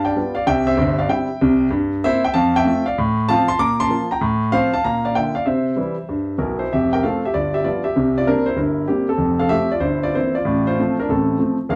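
A brisk 4/4 swing at 192 BPM drives this playful stride piano jazz in F major, its eighth notes swung with a lively lilt. A solo grand piano carries the whole piece, spanning from a deep F1 up to a bright D6. The piano has a warm tone and sits up front, with a short, wet small-room reverb adding a touch of space around it. The first part of the tune moves through C, F and Bb chords. From 6.7 seconds a new passage steps through G7 and C7 before settling back on F. The clip runs just under 12 seconds and is cut from a longer piece, ending on an F/A chord.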